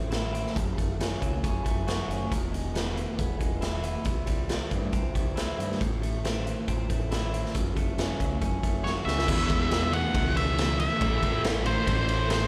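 Driving straight 4/4 at 138 BPM, this restless, bittersweet quiet-loud alternative rock passage opens with a slightly broken-up, lo-fi electric guitar playing fingered arpeggios through a small old amp over a growling overdriven fingered bass and a raw, gritty garage drum kit with a punchy kick and pumping stone-room sound, until a drum fill at 8.8 seconds brings in an up-front octave-fuzz lead melody and, at 9.3 seconds, a thick, double-tracked fuzz riff guitar with slapback echo, all heard as a live gig through the venue's PA with club reverb.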